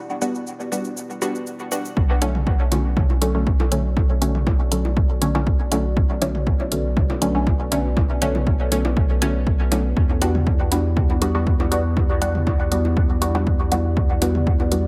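Dub techno at 120 BPM in B minor, deep and meditative, heard as a cut from a longer piece that opens on Em7 with a dark, nasal analog pad in chorus and sidechain pumping, a grainy, close and dry cabasa, and muted, detuned sawtooth chord stabs under a filter sweep, soaked in chorus, phaser, sidechain pumping and dub echo. At 2.0 seconds the harmony moves to Bm7 as a round sine sub bass and a punchy tape-warm kick arrive. An analog hi-hat and overdriven, layered electronic bongos and toms follow at 2.2 seconds, sitting in the background with their own dub echo, and together they take over from the cabasa. The chords return to Em7 at 10.0 seconds, with the mellow stabs up front in an echo-heavy digital ambience.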